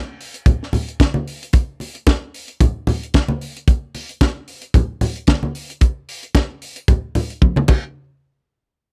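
A tight funk drum kit opens this short, sultry disco fragment at 0.2 s, setting a driving 4/4 groove with a gentle sixteenth-note swing. The kit sounds acoustic and mid-forward, with a high-tuned snare, a tight kick, and hi-hat, crash cymbal and toms, all with a rolled-off top. Congas join at 0.5 s, low-tuned yet bright, with a thin-skinned character and a small-room ambience, sitting up front alongside the drums. A drum fill arrives at 7.4 s, closing the passage as it cuts away from a longer piece. The production is a dry, close, 1970s-style studio sound with little reverb, keeping both percussion parts intimate and immediate.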